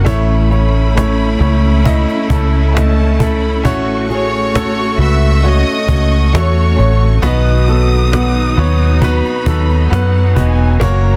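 A clear, polished baby grand piano anchors this hopeful, emotional pop ballad at 67 BPM from the outset, alongside a round, foam-muted electric bass sitting up front, a snappy, close cajon, a very quiet fingerpicked jumbo acoustic guitar playing arpeggios, and a bright, lush studio string section holding sustained chords. High above, an expressive symphonic violin section with vibrato carries a second line, while a pure, floating studio violin section with a sul tasto softness takes the melody from 4.1 to 7.0 seconds. The harmony moves from A to F#m/A to B, set in light reverb and small room ambience within a dense, heavily limited modern master.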